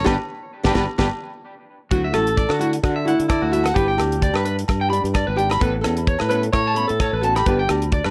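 Highlife guitar band with a joyful, carefree swing: fingerpicked nylon-string guitar, a twangy, slightly broken-up electric guitar arpeggiating through analog delay, a growly fretless bass with subtle chorus up front, a dry, damped 70s drum kit with a fat snare, and ringing agogo bells in the background open with a band accent before a breathy, distant alto saxophone takes a mellow jazz-style solo from 1.9 seconds, all in light small-room reverb.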